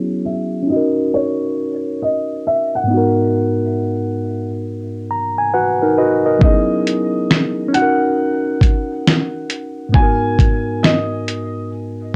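A slow, swung 4/4 groove at 68 BPM sets the pace of this short, reflective lo-fi hip hop clip in G# minor, cut from a longer piece and carrying a nostalgic cassette-tape haze with a filter sweep running through its full 12.2 seconds. A reedy, clean electric piano sits up front from the start, heard through its built-in speakers with tape colour and a low-pass filter, laying down accompaniment across a broad span from G#2 to A#5 and adding a fill between 4.6 and 6.4 seconds. Alongside it, a felt-muted upright piano carries a quiet, intimate melody between C#5 and G#5, its mellow, soft tone softened further by a low-pass filter and plate reverb. At 6.4 seconds a dusty, sampler-style soul drum kit enters, gritty and overdriven, with a thumpy kick, fat snare, hi-hat and finger snaps, compressed and re-recorded in a small room, and it sits up front. The harmony circles from F#9sus4 through D#m7 to G#m9, then repeats with F#13sus4 in place of the opening chord, all inside a moderate studio reverb.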